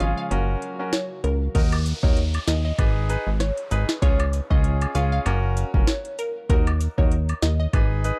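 This tough, bouncy dancehall excerpt in Eb minor at 97 BPM opens on a 1.5-second break where a glassy wavetable pluck with chorus and tape echo, a bright, short-sustained piano and a hollow, flute-like pad (both pumping against the kick) ride over a punchy, funky analog bass and an up-front electronic drum kit with deep kick, sharp snare and metallic hats, before an electronic downlifter enters at 1.5 seconds and a vintage woodblock-and-cabasa layer joins from 1.7 seconds as the chords move through Ebm, Abm, Db and Gb in a dark, dry mix.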